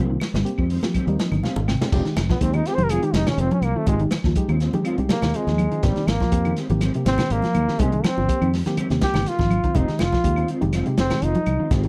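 Afrobeat at 123 BPM in F minor, intense and defiant, this cut from a longer piece rides a round, dark fingered electric bass and a gritty, saturated breakbeat kit with a tight kick, joined by very quiet congas, woody claves, two clean background electric guitars playing arpeggios and stabs with ensemble chorus, and a reedy electric piano with fast tremolo that adds a fill at 0.9 seconds, before a bright trombone with light vibrato enters at 2.3 seconds for an up-front solo over Abmaj7 and Fm7 chords in a dry, close 1970s-style studio sound.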